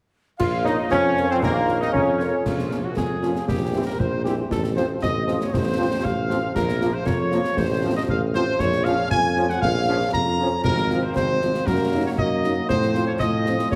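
A warm, up-front trumpet section carries the melody through this stern, resolute military-style march for wind band in Bb minor at 117 BPM, cut from a longer piece, with airy flutes and a mellow euphonium adding brief second lines in the opening seconds over punchy, distant trombone chords, a roomy tuba bass, soft dark horns, and cymbals, bass drum and snare drum, all bathed in wet scoring stage reverb and squeezed into a heavily compressed radio sound.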